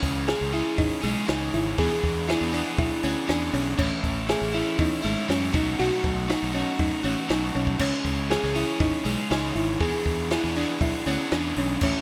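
Playful and bright, this 12-second math rock and midwest emo excerpt moves at 120 BPM in E major, with a round, tine-like thumb-piano-like synth pluck spinning chorused arpeggios over an up-front, double-tracked overdriven electric guitar riff, a growly fuzz fingered electric bass and a dry compact cocktail drum kit with a high-tuned snare that plays a fill at 7.5 seconds, all set in moderate plate reverb within a bright 1980s-style digital production as chords such as C#madd9, E7, Amaj7#11 and B7 cycle past.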